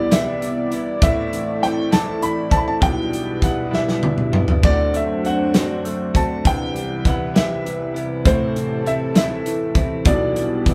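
An up-front modern studio drum kit plays through this swaying, heartfelt pop ballad in 6/8, with a tight kick, a medium-tuned snare, hi-hat, splash cymbal and toms, and a fill from 3.7 to 4.6 seconds. Set at 66 beats per minute in G major, the music cycles through Cmaj7, Am, G6/B and D7, sounding like a band playing together in one room with moderate reverb. A concert grand piano carries the melody in a high register, intimate and natural, its action noise audible. Beneath it, a felt-muted upright piano plays soft, mellow accompaniment, while a dark analog pad holds smooth, detuned chords with a slow attack and long release, shimmering with chorus. A clean, compressed electric guitar, recorded direct, picks arpeggios in the background through a spring reverb, in this short piece cut from a longer work.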